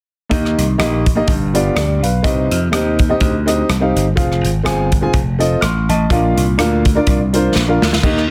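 A swung 4/4 groove at 124 BPM drives this short, jubilant slice of uptempo gospel, cut from a longer piece and running from 0.3 to about 8.3 seconds. An acoustic country drum kit with a punchy kick, medium-tuned snare, rim clicks, hi-hat and crash cymbal sits up front in an airy studio room, closing with a drum fill at 7.5 seconds. A bright, amped slap bass holds down the low end with a punchy, direct tone. A warm, intimate upright piano supplies the accompaniment across a broad register, its woody, boxy sound carrying audible action noise. The harmony moves hopefully from Eb through G7 and Cm to Fm, F7 and Bb, framed by light reverb and small room ambience in a dense, heavily limited modern master.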